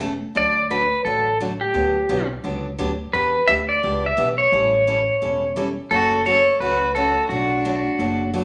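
A swung eighth-note lilt at a brisk 173 BPM in 4/4 drives this cheerful, down-home country excerpt in D major, cut from a longer piece. A bright, full-bodied dreadnought acoustic guitar picks the accompaniment while a woody, thumpy upright bass with gut strings plucks a dark low end beneath it. Up front from 0.4 seconds, a clean, compressed pedal steel guitar carries the melody, played with fingerpicks and colored by slide and volume swells. At 5.9 seconds a single bowed fiddle joins with an intense, clear second line and light vibrato. The chords move from D through Gmaj7, Em7 and A7 to F#m and Bm7, all set in a wet large-studio reverb.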